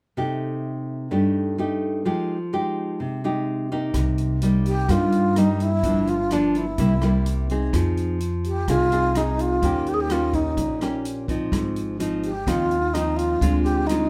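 A breathy, mellow alto flute carries the melody from 4.7 s, its soft attack, vibrato and unsteady tone sitting up front in a plate reverb. This is a melancholic, wistful bossa nova fragment at 127 BPM in 4/4. A fingerpicked classical nylon-string guitar opens alone on Cm6 and Fm9, and at 3.9 s the music settles into C minor as a woody, thumpy pizzicato upright bass and a swinging big-band drum kit of hi-hat, punchy kick and rim click join in a natural studio room, moving through Cm7, Gm7, C7, Fm7, Eb7 and Ab6 to a closing Dm7b5.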